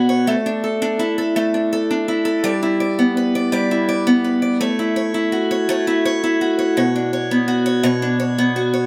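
Tender and romantic, this short pop excerpt in 6/8 features a solo picked acoustic archtop guitar, bright and up front with audible finger squeak, moving through Dsus2/A, G6, A6 and Bmadd9 chords under a moderate plate reverb across its 8.9 seconds.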